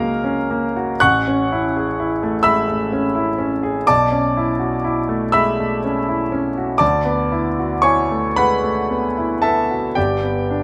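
Impressionist classical solo piano in a dreamy, luminous 6/8 with free rubato, this brief fragment of a longer piece spans 10.6 seconds of a concert grand heard up front through close, detailed microphones, its intimate, polished tone, deep bass, long sustain and audible action noise set in light reverb as rich chords such as Amaj7, Bm11 and D69 drift toward a closing G.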